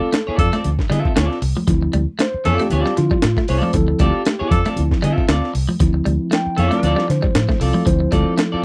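This dry, close recording has a 1970s studio character and comes from a longer piece of hypnotic, cool funk in 4/4 with a light swing on the sixteenths, resting on a single Dm7 chord. Up front, a gritty, tape-warm breakbeat kit with a thumpy kick, high-tuned snare and hi-hat sets the groove, while a dark, round, foam-muted fingered electric bass sits under it from 0.3 seconds. The featured part is a mellow tine electric piano playing stabs through its built-in speakers, joined by a clean picked electric guitar with subtle chorus in accompaniment and a second, twangy, scooped and compressed guitar working a low riff. Very quiet congas with a bright, thin skin add a small-room tap underneath. From 0.4 to 6.9 seconds, a clear tenor saxophone with light vibrato plays a distant, roomy second line on a single note.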